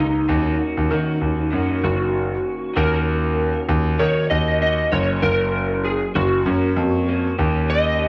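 Indie pop in Eb minor at 97 BPM with a lightly swung 16th feel, wistful and mellow, this short excerpt sets an electric slide guitar melody with a slightly broken-up edge, ensemble chorus and slapback echo over a picked, lo-fi, compressed accompaniment from an electric guitar through a small old amp, treated with subtle chorus and a vibrato effect. A clear concert grand piano carries the bass up front with deep, natural, short-sustained notes, all three parts playing throughout. The harmony moves from Ebm7 to Gbmaj7 at 4.9 seconds and Eb7 at 7.4 seconds, with the mix bathed in a moderate echo chamber reverb.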